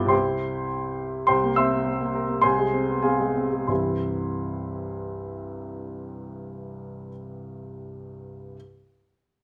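A grand piano sits up front in a moderate, large studio reverb, its tone warm and present with a long sustain that lets each chord ring into the room. This brief excerpt comes from a classical virtuoso piano study in C major, played solo in 2/4 with a free, rubato feel at roughly 89 to 106 BPM. The mood is brilliant and heroic, and the piano spans a broad range from C2 up to G6. The harmony moves from C to C7 at 1.3 seconds, then to F minor over a C bass at 2.4 seconds, before settling back on C at 3.7 seconds. The pace slows noticeably from 0.7 seconds until that return home, and the piano continues until it stops at 8.6 seconds.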